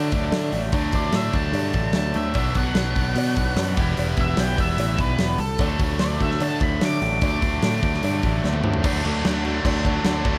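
A straight, driving 4/4 pulse from a big, punchy rock drum kit sits up front, its medium-tuned snare, kick, hi-hat, toms and crash cymbal heard in a big room, with a close, dry cowbell clanking in the background of this brooding classic rock excerpt. A dark, round picked electric bass anchors the low end alongside a biting, double-tracked overdriven guitar riff, moving through D, Bm and Em before returning to D. Over the top, an octave-fuzz lead guitar takes a distorted solo from the opening until a drum fill at 8.4 seconds. From 2.0 seconds a bright, shouting tonewheel organ adds very quiet sustained chords through a slow rotary speaker. At 8.8 seconds the solo gives way to a new section, where a very quiet second distorted guitar joins the riff, and the dry mix carries little reverb.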